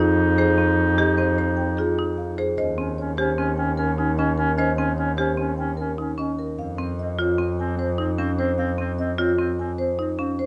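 A hypnotic, propulsive minimalist classical pattern in 5/4 at 150 BPM opens with all four parts together: two rosewood marimbas, one played with soft mallets carrying a mellow, airy melody while the other, struck with medium hard mallets, spins dark, percussive arpeggios. Alongside them, a smooth-topped classical clarinet plays a second line, and a rich, bowed double bass with vibrato sits up front underneath, with light reverb around the ensemble and tuning at A4 = 444 Hz. In this short cut from a longer piece, the harmony shifts from Fm7 to Eb7 at 2.6 seconds and settles on Dbmaj7/F at 6.6 seconds.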